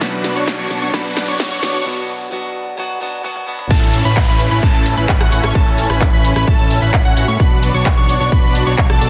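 This excerpt of uplifting, anthemic festival progressive house at 130 BPM in A major opens on a build-up, with a fingerpicked plugged-in steel-string acoustic guitar, dark, distant bowed chamber strings, a mellow plucky unison lead playing arpeggios and a huge, euphoric supersaw riff with phaser, all pumping against a punchy, overdriven kick up front, layered big-room drums with crash, claps, hats, rim clicks, shaker, snare and toms, and a riser and downlifter in the background. The guitar drops away at 3.7 seconds as the drop arrives and a fat, nasal, saturated analog bass enters, while dub echo trails the guitar and both leads and the chords move from Bm to A and back to Bm at 7.4 seconds. Light reverb and small-room ambience on the drums sit under a dense, heavily limited modern master.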